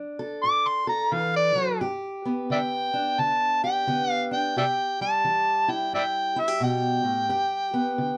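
An overdriven, amplified harmonica leads this swaggering, laid-back fragment of acoustic country blues, entering at 0.4 seconds with a gritty, jazz-inflected solo. Its tone carries light vibrato, tongue slaps and scooped notes, and it sits up front in the high register. Beneath it, a fingerpicked steel-string acoustic guitar supplies the accompaniment, also up front, with a dark, boxy, parlour-sized sound. The tune moves at an easy 88 BPM in 4/4 with a swung eighth-note feel, in G major. The opening phrase rests on D before the harmony shifts to G at 1.8 seconds, then moves through C and back to G, all within a moderate studio reverb.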